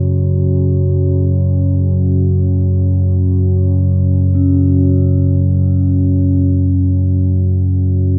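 Dark ambient drone in free time, this short excerpt cut from a longer piece feels ominous and desolate across its 8.2 seconds. A deep, rumbling drone sits up front from start to finish, its detuned sawtooth and triangle tones giving it a nasal, dark edge, with a slow attack, long release and its own built-in reverb. Behind it, a bronze singing bowl rings softly in the background for the full length, struck with a felt mallet and carrying a mellow, metallic shimmer with slow beating. The bowl lends a meditative quality that only deepens the sense of isolation. Everything is bathed in a wet cathedral reverb with a 5.8-second decay, so the sound hangs in a vast, shadowy space.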